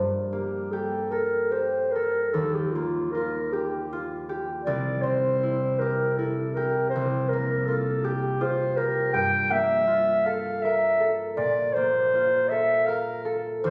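A ringing concert harp opens this hazy, wistful impressionist excerpt in a lilting three, its fingerpicked chords carrying the music along in a loose, rubato feel. A moment later, at 0.3 seconds, a dark, distant clarinet enters up front with a solo melody of classical poise, floating above the harp's acoustic glow. The pair sit in a moderate recital hall ambience, captured as if by a phone in the room, giving the music a roomy, intimate character.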